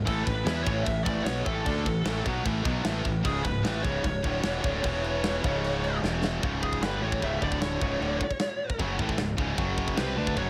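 Three picked high-gain rhythm guitars, one scooped and one double-tracked, open this heavy, aggressive metal excerpt with a bright, distorted riff set in the background over a growling, overdriven fingered bass, while a lead guitar carries a melody and a metal drum kit with a tight kick, medium-tuned snare, crash and china cymbals sits up front with a mid-forward, rolled-off top in a small room ambience, until a drum fill at 6.0 seconds gives way to a high-gain lead guitar solo from 6.4 seconds.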